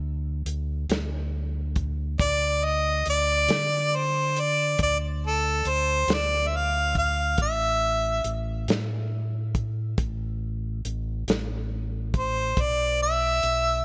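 This slow blues fragment in 12/8 has a rollicking yet gritty mood, cut from a longer piece. A fingered electric bass opens the track, dark, round and amped, sitting up front in the low register. At 0.5 seconds a soul drum kit joins with hi-hat, a tight kick and a medium-tuned snare; its sound is dry, smooth, warm and dark, with a rolled-off top. The clear harmonica takes the solo from 2.2 seconds, playing in a jazz style with light vibrato and scooped notes, and it stands out as the loudest voice. The harmony moves from D5 to A5 before settling on Bmadd11 near the close, all set in light reverb and studio ambience.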